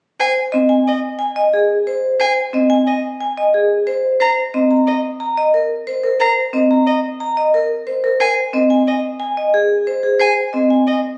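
A straight 6/4 pulse at 180 BPM drives this hypnotic, bright fragment of minimalist classical pattern music, tuned to A4 = 436 Hz and moving from Cm to Bbsus2 and back to Cm. A ringing vibraphone with medium hard mallets and fast motor vibrato carries the up-front melody, while a second, boxy vibraphone struck with hard mallets and its motor off spins arpeggios below. A single smooth, bowed violin with vibrato traces its own even arpeggios above. The violin and the lead vibraphone begin at 0.2 s, and the second vibraphone joins at 0.5 s. The sound has the moderate reverb of a recital hall plus added club reverb and compression, captured on a phone in the room.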